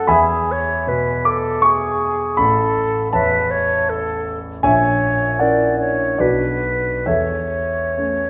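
Flowing in a rubato 3/4 at roughly 66-82 BPM, this short excerpt cut from a longer romantic classical piece pairs concert flute with grand piano in A major, its mood serene and tender. The flute carries the melody from start to finish across about 8.3 seconds, staying in a narrow span from G#4 to D5 with an airy, straight tone and soft attacks that sound distant yet close at hand. Beneath it, the grand piano supplies the accompaniment over a broad range from A1 to D6, its character dark with a deep bass, and it sits slightly more prominent than the flute. The harmony moves from E to A, then through F#7/A# to Bm before settling on A/E near 7.1 seconds. A wet recital hall reverb with a 1.6-second decay surrounds the duo, lending the whole passage a gentle, spacious glow.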